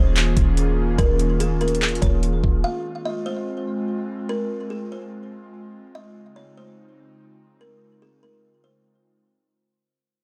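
A half-time 4/4 groove at 145 BPM opens this ethereal, spacious cloud-rap hip hop excerpt, with a smooth, tape-warm R&B drum kit of knocking kick, metallic hi-hats and handclaps up front beside a soft, round 808-style bass on Eb1, until both stop around 2.6 seconds. An airy, breathy, detuned pad warbles with chorus and sidechain pumping through Eb7sus4, Ab6 and Dbmaj7, while a buzzing, woody kalimba with a hollow-box ring carries the melody through digital delay. The dark, dry production, tuned to A4 = 445 Hz, fades out across the whole 9.3-second clip, with a brief break at 2.6 seconds.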